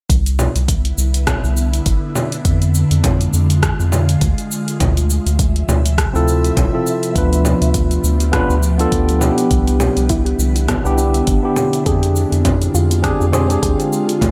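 Warm and blissful, this sunset chillout excerpt moves with a gentle swing in 4/4, set in a dreamy mix soaked in plate reverb. A deep electronic kick and a tape-warm deep house kit of cabasa, congas, hi-hat and rim click run from the start alongside a round analog bass with a nasal, tube-saturated edge and a filter-pluck character. An ethereal, airy pad enters at 0.8 seconds with sustained, detuned chords colored by ensemble chorus and phaser, drifting through Cmaj9, Fm6, Dm9 and G7/D. At 6.1 seconds a bright tine electric piano steps up front with clean accompaniment trailed by analog delay. From 9.8 seconds a soft, warbling vintage pluck adds arpeggios in the background, its chorus and delay blending into the hazy ambience.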